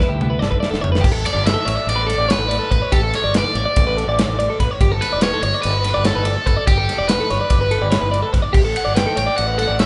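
In a straight 9/8 pulse counted at 288 BPM in eighths, this intricate, bright math rock and midwest emo piece is cut from a longer song and opens with a drum fill over its first second. A punchy, up-front studio kit, with a medium-tuned snare and a pumping room sound, drives the music with kick, snare, toms, ride and crash. A bright, clean and compressed twelve-string electric guitar plays accompaniment only from 0.0 to 1.0 s, while a second, warm and compressed twelve-string guitar picks high arpeggios throughout. Beneath them, a growling fingered electric bass with overdrive gives the low end a gritty, direct-and-amped edge. From 1.3 s a cranked stack guitar, overdriven and sitting up front, carries the melody over harmony that moves from G69 to A7sus4, then G, then back to A7sus4. The band sounds as if playing live in one room, with light reverb and a soft top end.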